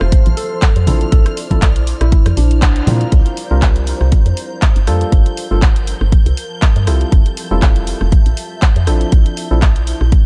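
A punchy, up-front electronic kick and a woody, round FM bass anchor this moody deep house excerpt at 120 BPM, with a lightly swung house kit of handclaps, rim clicks and bright hats, and damped, low-tuned congas in the background until 3.0 seconds. A worn, slightly out-of-tune tine electric piano carries the melody through digital delay over a smooth analog pad for the first three seconds, while hollow, chorused organ stabs pump against the kick through chords from Fmaj7 to Gm9. Behind them an ethereal, airy pad and a shimmering vintage string machine sustain a dark, dry backdrop, with a band accent at 2.6 seconds before the second section begins at 3.1 seconds.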